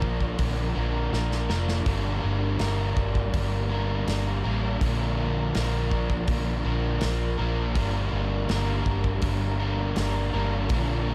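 A melancholic, brooding shoegaze and dream pop excerpt opens with two overdriven semi-hollow guitars playing a riff over Bb and G minor, one up front with subtle chorus and the other in the background through reverse reverb, while a dark, round, foam-muted fingered bass and a loose indie drum kit with a punchy kick and a drum fill at 1.1 seconds sit in a dreamy mix soaked in huge ambient reverb.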